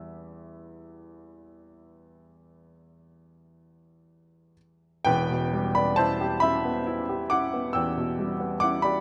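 A warm baby grand piano opens alone in a mournful romantic nocturne in 12/8 with rubato, sounding intimate and up front with audible action noise under close, detailed microphones in a dry room, spanning from deep bass to high treble as the brief passage moves into a new section at 5.1 seconds.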